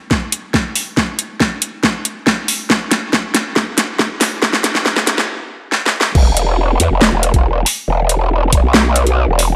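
A growling, wobbling bass bursts in at the drop at 6.2 seconds, its formant-filtered sine tone bright, saturated and up front, thickened with chorus and overdrive. Before that, this aggressive, menacing heavy wobble dubstep excerpt at 139 BPM in half-time builds up with fills on a layered electronic kit of huge snare, metallic hi-hats and crash, tape-warm and forward, alongside a knocking, overdriven electronic kick, until a stop at 5.3 seconds. A lush digital hall reverb surrounds the mix.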